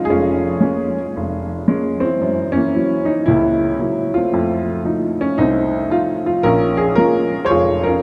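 A woody, natural upright piano opens alone and sits up front, swinging a late-night solo jazz figure in Bb minor at 113 BPM across a span from F1 to Db5. It moves through Bbm7, Gb7 and F7 before settling back on Bbm7 at 6.4 seconds, with a lilting triplet swing in 4/4 and tuning pitched at A4 = 441 Hz. A vast cathedral reverb with a 5.8-second tail surrounds the playing in this eight-second excerpt cut from a longer piece.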